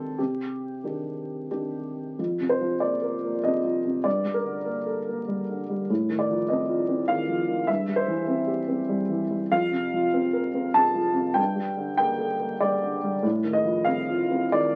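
Wistful and reflective, this short excerpt of a neoclassical minimalist piano piece drifts in a loose, rubato triple metre. A lone upright piano, intimate and woody with audible action noise and a slightly detuned, natural tone, sits up front and moves through chords such as Cmadd9, Fsus4, Gmadd9 and F7/A, with a new section arriving at 2.2 seconds. Moderate studio reverb surrounds it, and the whole is coloured by the crackle of a very old 78 rpm record.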